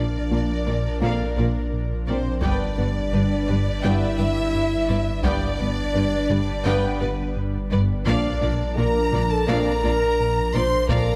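Cinematic hybrid orchestral and electronic film score, brooding and futuristic, in which lush bowed violins carry a distant melody over a focused second violin line, background violas and an airy, breathy chorused pad, while tight French horns hold chords, a very quiet glassy, crystalline wavetable pluck spins filter-swept arpeggios, a round analog bass riff and a saturated sub bass join very quiet double basses and cellos underneath, clear trombones add sustained chords from 1.0 s, and a close, dry taiko ensemble struck with heavy sticks enters at 2.4 s, all in a moderate concert-hall reverb.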